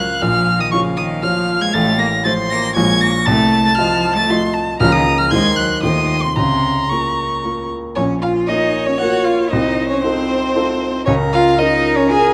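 This quick classical-period movement for piano quartet, in Bb minor at 116 BPM in a straight 3/4, feels restless and dramatic, and it is cut from a longer piece. A warm violin carries the melody up front, its light vibrato and smooth, even tone reaching as high as Bb6. Beneath it, a second violin adds an expressive line with a soft attack and portamento, while the cello's focused, rich voice supplies another second line with vibrato. The baby grand piano plays accompaniment throughout, dark and mellow, with an intimate, natural sound, a short sustain and audible action noise. The harmony circles around Bbm, F7 and a Cm7b5 chord. The opening material returns at 8.0 seconds, and close, detailed microphones capture all four players in a moderate recital hall reverb.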